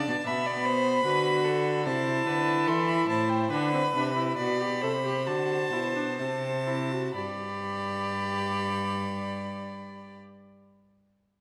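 In straight 4/4 at 61-77 BPM, slowing down through the first 7.2 seconds, this lively, elegant baroque-style fugue excerpt in G major, tuned to A4 = 444 Hz, sets a close, nasal first violin with an airy bow carrying the melody high above a second violin with light vibrato, a viola with a smooth top in accompaniment, and an up-front, rich cello on the bass, all four with reedy gut-string period tone, moving through Bm, Am/C, G and D7 before settling on G at 7.2 seconds in a wet recital hall.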